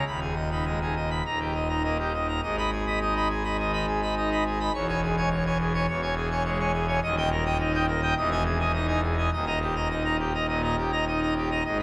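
Majestic and stormy, this brief cut from a longer classical organ toccata in G# minor moves at 104 BPM in a straight 4/4. A solo pipe organ on full organ with mixtures sits up front, its brilliant, romantic voicing spanning D#1 to B5 and passing through chords from G#m/D# and D# to C#m/E and Emaj7. The sound is bathed in a wet cathedral reverb with a 4.4-second decay, and a new section begins at 2.4 seconds.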